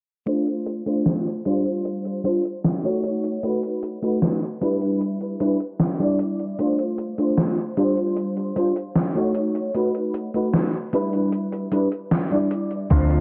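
A mellow FM electric piano, soft and full-bodied with ensemble chorus and tape echo, opens this hazy, nostalgic vaporwave excerpt at 76 BPM alongside a gated 80s drum machine's overdriven hi-hat and snare, cycling through Dm7, G7sus4, B7 and Em7 under a moderate plate reverb, worn warbling cassette drift, a low-pass filter and a filter sweep, before a woody fretless bass, a thumpy overdriven electronic kick and a slightly broken-up electric guitar riff with lush chorus arrive at 12.9 seconds.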